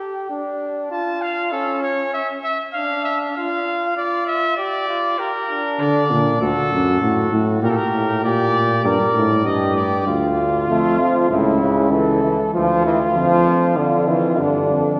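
A classical imitative canzona for brass ensemble, this excerpt moves at 98 BPM in a straight 4/4, solemn yet driving, tuned slightly below modern pitch at A4 = 436 Hz. A mellow trumpet carries the second line with vibrato from the first moment, joined at 0.9 seconds by a clear trumpet that takes the melody up to A5 before dropping out at 10.1 seconds. A mellow euphonium with light vibrato and a smooth top enters on the bass at 5.8 seconds, and a clear, roomy trombone with light vibrato adds accompaniment from 10.7 seconds, sitting as the loudest part. The harmony circles D minor, passing through A over C#, D minor over F, and G minor, with some chords voiced rootless. A reverberant concert hall with a 2.2-second decay surrounds the group, heard from further back in the room, and the piece is cut from a longer work.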